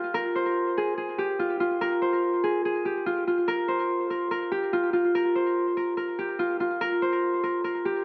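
With a half-time 4/4 feel at 144 BPM, this dark, melancholic hip hop fragment features a Celtic harp playing alone for its full 8 seconds, thumb-plucked, ringing and up front between F4 and C5, its acoustic tone treated with a low-pass filter and tape echo, all set in a small room with light reverb and an echo-heavy mix.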